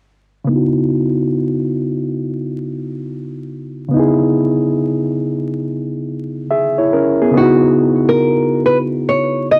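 The recording has a homemade cassette sound, with vinyl crackle, a faint mains hum and light reverb around it. This brief hip hop fragment feels nostalgic and melancholic, its 16th notes carrying an easy swing in 4/4. A barky reed electric piano carries the accompaniment from 0.4 seconds: reedy, bright and clean, heard up front as if through its built-in speakers, resting on a C#m11 chord while a filter sweep moves across it. At 7.4 seconds a small, fingerpicked nylon-string guitar enters up front with the melody, its acoustic tone warm. Both parts are low-pass filtered and coloured by cassette tape, and they play together until 9.6 seconds.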